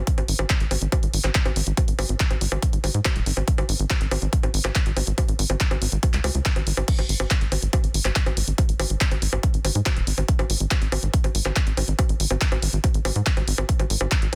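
A driving psychedelic trance groove in straight 4/4 at 141 BPM, built on a punchy, up-front electronic kick drum alongside a big-room dance kit of bongos, handclaps, hi-hat and crash cymbal. Underneath, a tight sequencer bass plucks dark, fast-decaying notes from sawtooth and square waves with a ring-modulated edge, running the full 14.3 seconds of this cut from a longer piece. The mix is dry and dense, with a heavily limited modern master.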